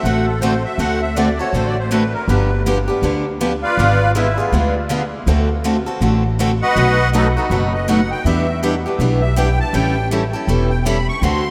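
Charming and swinging, this short cut from a longer jazz manouche piece moves at a brisk 161 BPM in D mixolydian, with a lilting swing on the eighths. A reedy, shimmering musette accordion carries a solo up front across the whole 11.5 seconds, its musette tuning giving the line a wavering sheen. Two picked steel-string parlour guitars supply the accompaniment: one sits up front with a bright, boxy tone and fresh strings, while the other, equally bright and boxy, stays in the background. Beneath them, a thumpy, woody upright bass with gut strings is plucked pizzicato, dark and close in the mix. The changes run from D7 through G7 and G#dim7 back to D7, then B7, Em7 and A7, a classic turnaround feel. A very wet cathedral reverb places the small string band in a vast, echoing space, with long tails hanging around every note.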